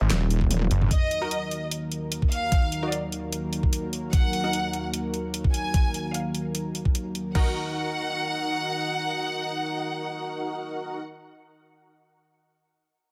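Chaotic and heavy, this half-time wobble dubstep excerpt in Eb minor at 149 BPM opens with a growling distorted saw bass and a saturated wobble bass over a dubstep kit with a huge snare and bright hats, joined by a knocking kick at 0.4 seconds. After a drum fill, the basses give way at 0.9 seconds to a clear, close violin section with vibrato and dub echo and a lush, warbling unison pad with sidechain pumping. Punchy filtered supersaw stabs join at 1.2 seconds and return at 7.4 seconds, all in light digital reverb.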